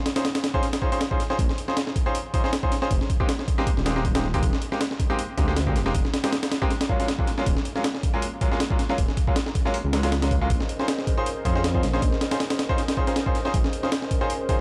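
A dry, gritty hardware recording with a digital ambience frames this raw, frenetic excerpt of drum and bass in the jungle vein, cut from a longer piece and riding a lightly swung 16th-note feel. Up front, a sampler-style breakbeat kit sounds compressed and pitched up, its thumpy kick and high-tuned snare carrying the grain of a re-recording in a large room alongside the hi-hat. A brilliant grand piano, intimate and close enough to reveal its action noise, plays stabs through dub echo over minor eleventh chords that move through rootless Bbm11, Fm11 and Ebm11 voicings before returning to Bbm11. At 1.4 seconds a deep, rumbling detuned saw bass enters, its saturated unison voices beating against one another until it drops out at 13.6 seconds. From 10.6 seconds a nostalgic, lo-fi tape-like pad warbles in the background with slow-attack sustained chords, softened by chorus and built-in reverb.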